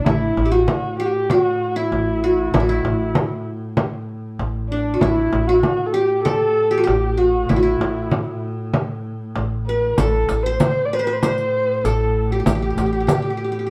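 A bright-edged, plectrum-plucked qanun leads this hypnotic, longing Turkish makam ensemble piece in A huseyni at 97 BPM, shadowed by a dark, woody bowed kamancheh with vibrato and portamento, over an up-front pizzicato upright bass on steel strings, a clear, focused bowed double bass drone on A2 and a small frame drum up close, while a riq's jingles join in the background at 10.0 s, the band playing live together in one room with moderate studio reverb.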